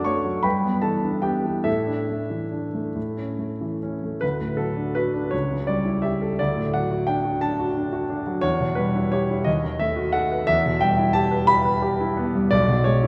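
A smooth, vintage-toned grand piano opens this hopeful, lyrical romantic character piece alone, a fragment cut from a longer work, moving with rubato in 6/8 at roughly 46-60 BPM in D major, where an Asus4-to-A cadence gives way at 4.2 s to a passage that settles on D before turning toward E minor and B7/D# and closing on a rootless E/B, the piano ringing through a wet concert hall and heard from further back in the room.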